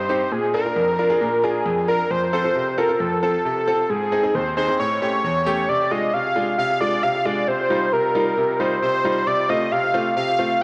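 Pop instrumental at 134 BPM in a straight 4/4, cool and melancholic in mood, taken from a longer piece. An octave-doubled lead carries the melody between Ab4 and F5, its sawtooth-and-triangle tone bold, retro and vintage, with a fast attack, sustained notes, warbling vibrato and a chorus shimmer, all thrown back by dub echo. Beneath it, a bright grand piano supplies the accompaniment from Eb2 up to Bb4, polished and brilliant with a short sustain, sitting up front and also trailed by dub echo. The harmony moves from Bb through F, Ab and A7 before shifting at 5.7 seconds over a C bass into Ddim/C, Ebadd9/C and F/C. A moderate echo-chamber reverb with a 1.7-second tail and studio ambience surrounds the echo-heavy mix.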